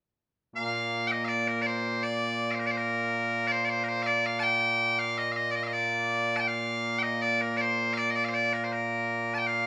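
Solo bagpipes enter at 0.6 s, loud and piercing, placed up front in this short passage of Scottish traditional pipe music cut from a longer piece. The mood is proud and ceremonial, set in Bb major at 81 BPM in a straight 2/4, with the pipes tuned to A4 = 437 Hz. The bright, continuous tone spans Bb2 to A5 and carries the whole passage alone until 9.7 s. A moderate recital hall reverb, with a decay of 1.4 s, places the pipes in a recital hall.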